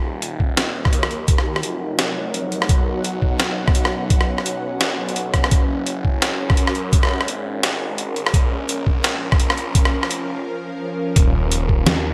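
Bright 1980s-style digital sheen with lossy artefacts and light reverb frames this dark, cinematic half-time drum and bass excerpt in Eb minor at 170 BPM, where a swirling, thick phased detuned saw bass runs from 0.0 s beneath a tense, nasal, bowed-like drone with vibrato, 12-bit sampler grit and sidechain pumping that enters at 1.2 s, while an up-front, gritty, pitched-down boom bap sampler kit of hi-hat, rim click and snare with gated reverb, joined by a thumpy electronic kick, drives a swung build-up under a filter sweep on the drone, pausing for a brief break at 10.5 s before the chords return to Ebm.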